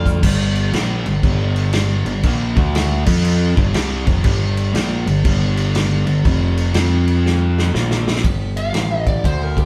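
Heavy and brooding, this blues rock and southern rock power-trio excerpt in G minor swings at 120 BPM, with a double-tracked, fuzz-drenched guitar riff up front over a growling, overdriven picked bass and a punchy vintage drum kit with a rolled-off top, all playing live in a stone room. The fuzz riff moves through Gm, D5, F5 and Bb5 until 8.2 seconds, capped by a drum fill from 7.2 seconds. A dark, smooth overdriven lead guitar with slapback echo then takes a short solo from 8.6 to 9.7 seconds over a G5 chord.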